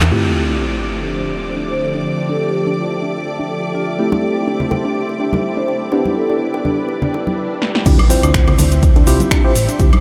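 This deep, late-night deep house excerpt opens on a brief band accent of silky string-machine chords, round hollow-body electric bass, the punchy deep house drum kit and bongos and congas, before a warbling lo-fi pluck arpeggio with a filter sweep, worn overdriven tine electric piano stabs, a lush distant violin section, very quiet electronic sub drops and impacts, and a mellow soft-mallet vibraphone melody from 1.7 s drift through a dreamy reverb-soaked mix, with the hand drums returning at 4.1 s and a drum fill leading into a drop at 7.9 s, where a punchy analog kick, the bass and a grainy egg shaker join the metallic hats and snaps of the kit, all over Dm11, Am7 and Em7 chords.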